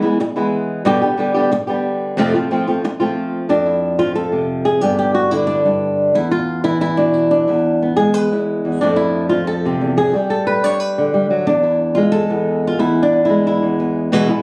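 In a straight 4/4 at 181 BPM, this fiery, dramatic flamenco fragment, cut from a longer piece, features a lone fingerpicked acoustic flamenco guitar, warm and up front, ranging from E2 to C#5 as it moves among E, G and F chords, with a new section arriving at 3.5 seconds and the whole captured on a phone in the room, then given light studio reverb and compression.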